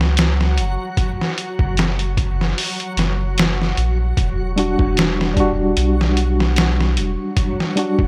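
Set in a digital ambience, this short excerpt of cinematic, melancholic trip hop moves at 75 BPM with a light swing, shifting from an F#5 chord to Em9. A compressed, pitched-down sampler-style kit with a thumpy kick and medium-tuned snare sits up front beside a deep, round dub sub bass, while a reversed, dreamy granular texture hovers quietly in its own reverb. At 4.6 seconds a worn, slightly out-of-tune tine electric piano enters through a combo amp, colored by tremolo, harmonic tremolo, vintage 12-bit sampler grit and tape echo.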